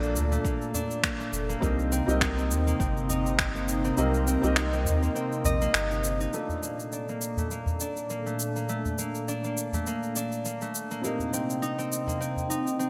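Hypnotic and mystical, this organic downtempo excerpt drifts over a lush hall reverb and a bright 1980s-style digital sheen, with a ringing, fingerpicked concert harp up front playing arpeggios and a soft, felt-muted upright piano accompanying through analog chorus and digital delay. An airy, breathy pad holds detuned sustained chords through chorus and phaser, and both the piano and the pad pump against the sidechain. Electronic cabasa and finger snaps sit up front under gated reverb beside a small, dry udu, while a deep layered electronic kick plays only from 0.4 to 3.5 seconds and a round sine sub bass stops at 6.3 seconds.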